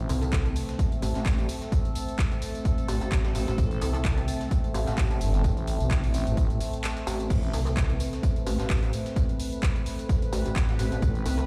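The recording sounds like it is playing through a big sound system in a bare room, with a large studio reverb and digital ambience framing this aggressive, swaggering bass house excerpt at 129 BPM in 4/4, swung on the sixteenths, in A minor and tuned slightly flat to A4 = 437 Hz. A pulsing, heavy pluck wobble bass, saturated and compressed with chorus and overdrive, drives the track up front over a single Amadd9 chord. A growling, thick FM bass joins it from 3.6 to 7.5 s. A punchy, tape-toned electronic kick sits firmly forward, while a house kit adds crash cymbal, handclaps, tambourine and soft-edged hi-hats in a small room ambience. Far beneath them, a very quiet, gritty breakbeat sampler kit adds hi-hat and a high-tuned snare. Behind it all, a bright, detuned resonant pad evolves through slow filter swells, its sustained chords shimmering with chorus and phaser and pumping against the kick, with a brief break at 6.8 s.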